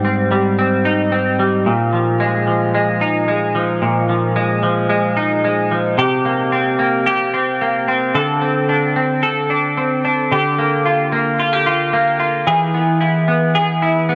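Dream pop with a floating, ethereal mood, set at 111 BPM in a straight 4/4 and tuned to A4 = 435 Hz, this piece is cut from a longer work. A lone semi-hollow electric guitar carries everything, picked and clean with a bright, compressed hollow-body tone sitting up front, colored by analog chorus and delay. Its range runs from Ab2 to A4, and it opens on Abmaj7 moving to Bb7sus4 before a new passage begins at 6.0 seconds. That second stretch steps through C5 and D5 power chords, then Gm7/D, and lands on E at 12.5 seconds. A huge ambient reverb with a 6.9-second decay surrounds the guitar, and the overall production leans dark.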